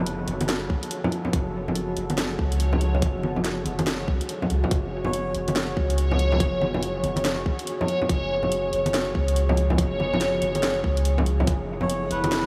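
Cavernous and heavy, this deep dubstep excerpt moves at 142 BPM in a swung half-time feel in F# minor, holding a single F#madd9 chord under a dreamy, reverb-soaked cathedral space. A dark, detuned sawtooth pad with chorus sustains over a round, mellow sub bass, while a reversed, granular texture adds a bright, swelling shimmer. A tight, up-front electronic kick and a garage kit with a cracking snare and hi-hat drive the groove beside ringing, low-tuned congas with dub echo, and a reedy, breathy melodica surfaces briefly at 5.1 seconds and again from 11.8 seconds.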